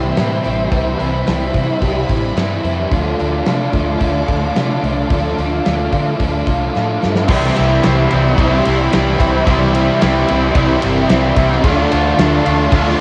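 Shoegaze and dream-pop rock with a dreamy, blissful mood, built on overdriven guitar riffs (an up-front hollow-body part with ensemble chorus, a bright one with reverse reverb, and a very quiet double-tracked one entering at 7.3 seconds), a shimmering, octave-doubled twelve-string acoustic fingerpicking arpeggios with audible finger squeak until 7.3 seconds, a very quiet detuned sawtooth pad swelling through sustained Cmaj7 and Dm chords, a round, foam-muted bass with transformer saturation, and a dark big-room drum kit with a boomy kick whose fill at 6.7 seconds leads into the second section, all given a cassette-tape home-recording character with light reverb.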